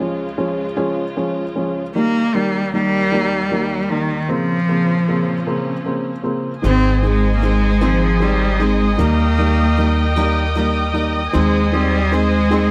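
In a slow, straight 6/8 at 51 dotted-quarter beats per minute, this aching, melancholic pop passage opens with a dark, intimate upright piano, its action noise audible, beneath a lush bowed string section, tuned slightly low to A4 = 436 Hz. At 2.0 s a rich, focused solo cello takes the melody up front with vibrato. After the chords move from Db through Eb and Bbmadd9, a growly pizzicato upright bass and a bright picked steel-string guitar, its arpeggios set in the background, join at 6.6 s on the arrival at Ab, all within a moderate concert hall reverb.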